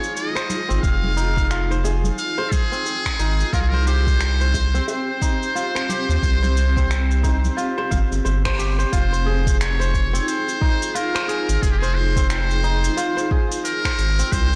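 A swung sixteenth-note groove at 89 BPM in 4/4 drives this hypnotic slice of organic downtempo in F minor, cut from a longer piece and moving between Fm7 and Cm. An electronic kick drum, deep and re-recorded in a large room, enters at 0.8 seconds beneath an organic electronic kit of cabasa, finger snaps and crisp hi-hats, its snare softly clipped, while soft-handed congas and bongos sit in the background until 8.4 seconds. A round analog bass, dark and up front with tube saturation and sidechain pumping, anchors the low end from 0.7 seconds. Fingerpicked kora arpeggios ring through a delay, and a granular cloud pad holds blurred, detuned chords that pump with sidechain compression inside their own reverb. Over this, a distant, buzzy trumpet with a metal mute plays a forceful jazz-style solo melody with scooped notes and light vibrato, trailed by tape echo. A band accent at 8.4 seconds marks the turn into the second section, and the whole mix has a blown-out, overdriven character within a light digital ambience.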